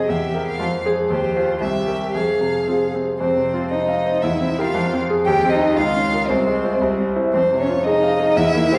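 A quick classical-period movement for piano trio in F minor at 116 BPM in 2/4, this restless, dramatic passage is cut from a longer piece and runs through two sections, shifting at 3.2 seconds. A rich, focused violin sings the melody with vibrato up front, while a clear cello carries a second line beneath it and a bright, brilliant concert grand piano supplies accompaniment with deep bass, all three playing throughout. The trio is heard from further back in a recital hall whose reverb lingers for 1.8 seconds, and the harmony moves from a diminished opening chord through dominant sevenths back to F minor.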